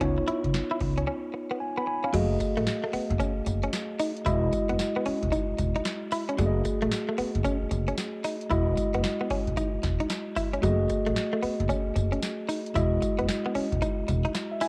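A booming, overdriven analog drum machine with a deep kick, crisp snare, metallic hats, handclaps and tambourine opens this slick, bouncy new jack swing R&B cut together with a mellow tine electric piano, a woody, growly pizzicato upright bass and a clean, compressed, picked electric guitar riff coloured by analog chorus. The whole cut rides a swung 16th-note feel, and after a break from 1.1 to 2.1 seconds the groove settles over alternating F#m69 and Emaj9 chords, with the piano and guitar sitting up front. Moderate spring reverb and cassette-tape grit give the whole piece a homemade feel, and the bass drops out at 14.2 seconds.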